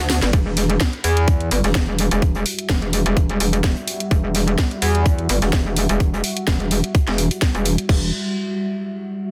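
A drum fill opens this bouncy, swaggering bass house cut at 127 BPM in E minor, with a light 16th-note swing. An up-front, overdriven electronic kick and a layered garage kit with a cracking snare, hi-hat, ride, crash and tambourine drive the groove, while a very quiet, airy acoustic jazz kit adds hi-hat and snare underneath. The metallic wobble bass dominates from the start, aggressive and saturated with chorus and sidechain pumping, and a filter sweep runs across it from 0.3 to 7.9 seconds over an Emadd9 chord. At 2.5 seconds a deep, moody pad of detuned sawtooth unison and sub octave slowly fades in behind, mellow and gritty with 12-bit sampler texture, chorus and its own reverb, along with sidechain pumping. The mix is dense and heavily limited, with little reverb beyond the drums' small room.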